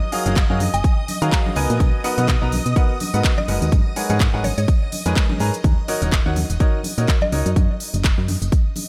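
A brilliant, woody upright piano riff with delay and sidechain pumping runs through this bittersweet, energetic piano house excerpt at 125 BPM in Eb minor, moving through Gbmaj9, Bmaj7, Abm11 and Ebm7 over a punchy up-front electronic kick, a round, dark FM bass that pumps with the kick, crisp house-kit hi-hats and handclaps, distant tambourine and congas in the background, a shimmering vintage string machine holding sustained violin chords, and a percussive mallet-like synth pluck melody coloured by phaser, chorus and delay, all set in a digital ambience until the chords drop out at 7.6 seconds.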